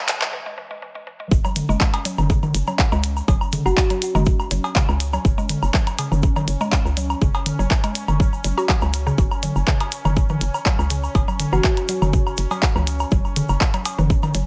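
A punchy, layered electronic kick sits up front in this hypnotic, cool minimal techno excerpt, landing at 1.3 seconds alongside a hollow, bouncy FM bass that pumps against it, after a short filter-swept build-up and break. A woody, mallet-like synth pluck with tape coloring and delay carries the riff over a bubbling, resonant stepped-filter texture, clicky hats and handclaps from a minimal drum kit, a grainy egg shaker, and delayed electronic toms, woodblock and cowbell. A gentle, tine-like thumb-piano pluck appears only briefly, near 3.7 and 11.5 seconds, within a light digital ambience.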